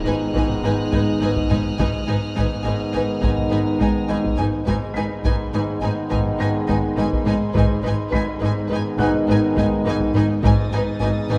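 Set in a straight 5/4, this uneasy, tense suspense-film cue opens on a huge, barely audible sub drop under the first 1.8 seconds, and close, dry taiko struck with hard sticks enters at 0.4 seconds. Sul tasto strings carry the fabric: a pure, floating violin section holds the melody over an intimate violin second line and a high violin texture, a distant viola accompaniment, and a dark cello and double bass bass. Mellow French horns and clear trombones sustain chords with light vibrato, a ringing fingerpicked Celtic harp repeats a riff, and a soft felt-muted upright piano adds a faint high texture, all within a moderate scoring-stage reverb and a dusky, warm production.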